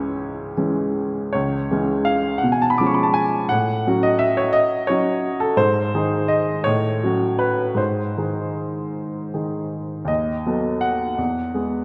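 A clear grand piano, present and up front, carries this brief romantic character piece alone from 0.0 to 11.8 seconds, ranging from C#2 up to D6. Set in C# minor and 6/8, it moves at roughly 50-59 beats per minute in dotted quarters with a free, rubato feel, and its mood is passionate and stormy. After a short opening passage, a new section begins at 1.3 seconds, and the harmony travels from C# minor through C#7/B, F#m/A and G#, returning to F#m/A and G# before B7/D# leads to E at 11.2 seconds. The piano sits in a wet scoring-stage reverb with a long 2.2-second decay that lends the sound a spacious halo. Cut from a longer piece, the fragment ends on that arrival in E.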